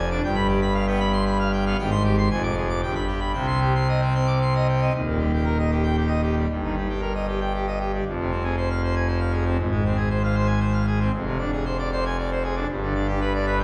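A solo pipe organ on full registration, its mixtures giving a majestic, brilliant edge and a romantic voicing spanning Eb1 to D6, drives this stormy, dramatic excerpt of a classical organ toccata at 116 BPM in 3/4, moving from C minor to Eb major at 5.0 s and heard from further back in a recital hall whose reverb lingers for about 1.4 seconds.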